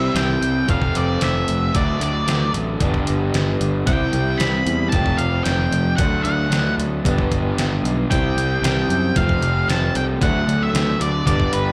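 A straight 4/4 pulse at 113 BPM from a detuned 8-bit drum machine, entering at 0.2 s with a thumpy kick, medium-tuned snare and tape-warm, sampler-style tone, drives this carefree, wistful indie rock passage cut from a longer piece, where a round, punchy, up-front overdriven bass sits alongside a crunchy picked guitar riff, a slightly broken-up, lo-fi guitar through a small old amp with subtle chorus and tape echo, and a dark octave-fuzz lead melody with slapback and tape echo, all over a repeating C, F, D, G progression in a live club sound heard through the venue's PA with light reverb.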